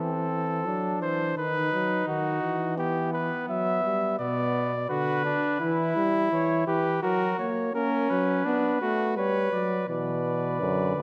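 Serious and driving, this imitative classical canzona for brass ensemble, cut from a longer piece, opens with a mellow trumpet carrying the melody over a warm, close-miked flugelhorn on the second line and a trombone accompaniment shaded with light vibrato and a soft attack. At 9.9 s a euphonium with its own light vibrato enters on the bass line as the music moves into a new section. Every voice sits up front, captured by close, detailed microphones within a moderate concert hall reverb.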